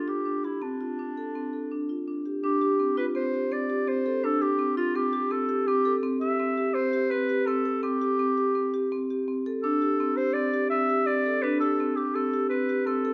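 Urgent yet pensive, this contemporary instrumental piece in D dorian moves at a brisk 167 BPM in an uneven 5/4 metre with a straight feel, and it is cut from a longer work. A solo clarinet in a classical style carries the melody between D4 and E5, with a roomy, distant character. A marimba played with medium hard mallets enters at 0.1 seconds with arpeggios between C4 and A4, warm-toned and placed up front. The harmony moves from Dm to Dm7, reaches a rootless Am7 at 6.0 seconds, and settles on Csus2 at 9.6 seconds. A brief opening gives way to a longer passage from 2.4 seconds, and both instruments play through to 13.1 seconds. A moderate recital hall reverb surrounds the duo.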